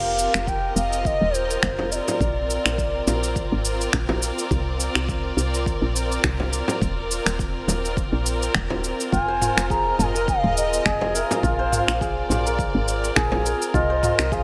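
Earthy and warm, this organic downtempo piece, cut from a longer work, moves with a gentle swung sixteenth-note feel in 4/4. A bamboo-toned bass bansuri carries the melody with a pure, straight, tongued tone touched by digital delay, pausing at 3.6 seconds and returning at 9.1 seconds alongside a hammered santur, whose shimmering, ringing arpeggios carry a tape echo. Underneath, a lush, bowed studio string section holds smooth, vibrato-rich chords that pump against the sidechain, while a woody, round FM bass with a fast, decaying attack adds dark weight through tube saturation. The produced afro-pop kit sits up front with cabasa, finger snaps and toms in studio reverb, joined by a deep electronic kick and, from 1.8 seconds, a close, dry frame drum struck with hard hands. Light reverb and a small room ambience frame the mix as the harmony drifts from F5 through Bbadd9, Eb5 and Fm7 to Ab/C.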